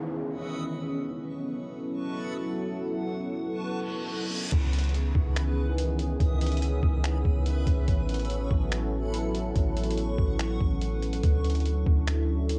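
Up front from the first second, a dark analog pad holds sustained C#m9 and A69 chords, its detuned sawtooth tone thickened by chorus, a sub octave and cassette tape, while a filter sweep runs across it through the opening 4.5 seconds, with sidechain pumping and a low-pass filter shaping its sound. This is atmospheric cloud-rap at 143 BPM in a half-time 4/4 feel, set in C# minor with a hazy, spacious mood, and it is cut from a longer piece. An electronic downlifter and reverse cymbal sit low beneath the pad at the start, the cymbal sounding between 3.9 and 4.5 seconds, and a faint backwards swelling texture, granular, bright and dreamy, floats above in its own reverb. At 4.5 seconds a trip hop sampler-style drum kit arrives, pitched down, compressed and gritty, with a thumpy kick, hi-hat, finger snaps and crash cymbal, joined by a soft, round 808-style bass that sits deep and up front. The chords move from C#m9 to A69 and reach Dmaj9 near the close, all under light reverb and the character of a home cassette recording.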